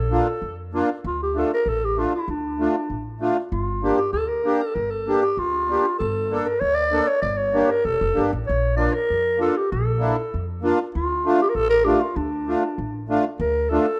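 Soulful and festive, this short klezmer excerpt moves at 97 BPM in a straight 2/4, with a growling, raspy clarinet up front carrying the melody with vibrato, scooped notes and a jazzy, breathy edge, its plate reverb and tape echo adding depth. Close beside it, a reedy, sweet accordion with light tremolo tuning fills in the harmony, while a woody, thumpy pizzicato upright bass anchors the low end through chords moving from Bb and Dm to Gm. The rough home-demo mix sits in a wet studio reverb, and the cut ends at 14.0 seconds.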